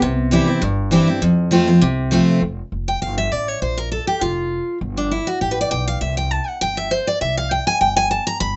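Driving and virtuosic, this short bluegrass excerpt at 200 BPM in F major swings lightly in 4/4 as a bright, full-bodied picked dreadnought acoustic guitar sits up front over a woody, thumpy pizzicato upright bass on gut strings, the guitar moving from accompaniment into a solo at 2.4 seconds over chords of C, F, Bb5, G and C5, all heard in a small room with a rough, dull home-demo sound.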